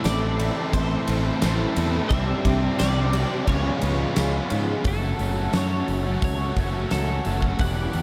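A chiming twelve-string electric guitar leads this blissful, wistful shoegaze and dream pop passage, its clean, compressed melody shimmering through analog chorus and delay over a silky, detuned string pad that sits very quiet and bright with a moving notch and vibrato. Three overdriven guitars fill out the background with riffs: a biting one trailing reverse reverb, a compressed one thickened by ensemble chorus, and a double-tracked, cranked stack guitar that drops out at 4.8 seconds. A growling, fingered electric bass pushes up front with its own overdrive, while a huge arena drum kit of punchy kick, fat snare, hi-hat, ride and glittering cymbals drives a straight beat in a pumping hall. A close, jingly tambourine adds a faint shimmer until 7.1 seconds. The harmony drifts from Am through Csus2 and Db7 before settling on F#m7 at 4.9 seconds, and the whole dreamy mix is soaked in a cathedral reverb with a long tail, suggesting a fragment lifted from a longer piece.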